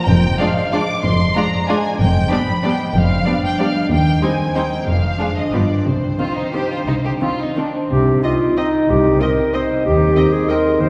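A concert harp's ringing arpeggios and a muted chamber violin section carrying the melody open this excerpt from an elegant, festive orchestral ballroom waltz in C minor, set in 3/4 at 167-204 BPM with a rubato feel. Beneath them, muted cello and double bass sections hold the bass. A second muted violin line and a viola section fill in the accompaniment, all with a dark, veiled con sordino tone and vibrato, while the violas and cellos sit in the background. At 7.9 seconds a new section arrives as a clear, up-front clarinet enters with a second line, and a French horn section adds sustained chords with light vibrato. The harmony moves through diminished and dominant-seventh colors toward C minor, with the harp's fingerpicked, acoustic sound adding motion. A wet concert hall reverb places the ensemble further back in the room, giving the whole a softly distant, ballroom-like glow.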